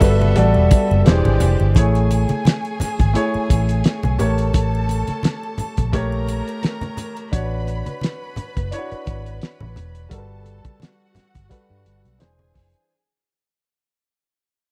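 Lush 1970s-style soul with a romantic mood, where a breathy, whispered tenor saxophone sighs briefly in the background until 1.1 s over a bowed violin section with smooth vibrato, a deep-toned concert grand piano, a round, foam-muted electric bass and a muffled, gritty drum kit with a fat snare, while low-tuned congas and a shimmering triangle add colour in the background of the dry, close small-room sound before the whole passage fades out from 1.8 s.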